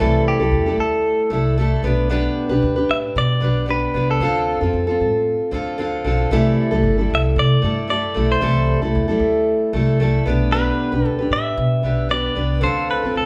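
Heartfelt and carefree, this pop excerpt moves with a light swing on the sixteenths, its three players heard together live in one room with a wet, large studio reverb around them. A bright, twangy clean electric guitar, recorded direct and compressed, carries the picked melody up front across the full 13.3 seconds. Beneath it, a picked steel-string acoustic guitar supplies warm accompaniment with audible finger squeak. An upright bass, plucked on gut strings, anchors the low end with a woody, dark, thumpy tone. The harmony cycles through C6, G/B and Dm7, giving the passage a gentle, sunny lilt.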